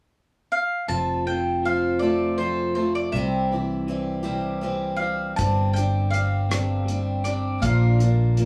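In a straight 6/8 at 54 BPM, this jangly, nostalgic folk rock and heartland rock excerpt in F major opens with a woody, double-strung mandolin melody at 0.5 s, soon joined by a bright, up-front picked archtop acoustic guitar with finger squeak, a slightly broken-up, compressed electric guitar riff through a small old amp, and a round fingered bass moving through F, C, Gsus4 and Bb, while a dry, dark 70s drum kit of hi-hat, tight kick and rim click enters at 5.4 s, the band heard playing live in one small room.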